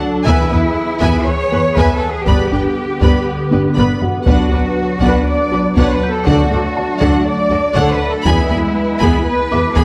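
A straight 4/4 pulse at 120 BPM from a hard-stick taiko ensemble, with a fill at 3.5 s, drives this tense, futuristic hybrid orchestral and electronic film cue, cut from a longer piece, where a hollow, flute-like pad with ensemble chorus holds chords from the start beside a rich cello section carrying the bass, joined at 0.3 s by double basses in the background, a lush viola accompaniment with portamento, a violin second line with vibrato, soft, round pluck arpeggios through chorus and digital delay, and a very quiet, boxy grand piano adding texture, the whole set in a moderate scoring-stage reverb over chords moving from E through G, B minor and D back to E.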